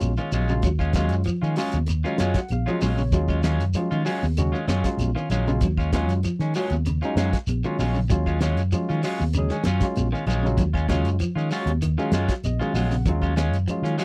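A funky, defiant afrobeat groove in Eb minor at 96 BPM opens on an Ebm11 vamp, with a round, dark fingered bass up front, a cloth-damped drum kit with a fat snare and tight kick, clean picked guitar arpeggios in the background, grainy shekere, high-tuned ringing congas, very quiet woody claves, and a bright, barky, lightly overdriven tine electric piano that adds fills at 1.9 and 12.1 seconds, while a twangy, slightly broken-up guitar joins with stabs at 0.2 seconds, all captured in a dry, close 1970s-style studio sound in this short excerpt.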